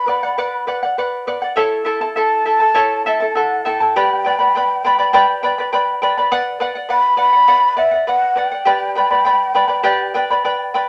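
Earthy and festive, this Andean folk passage, cut from a longer piece, moves at 102 BPM in a straight 4/4 over Bm, A and G chords, with a breathy, hollow large quena singing the melody with vibrato and a soft attack from a distance while a fingerpicked charango shimmers up front with its double strings, all set in a moderate studio reverb.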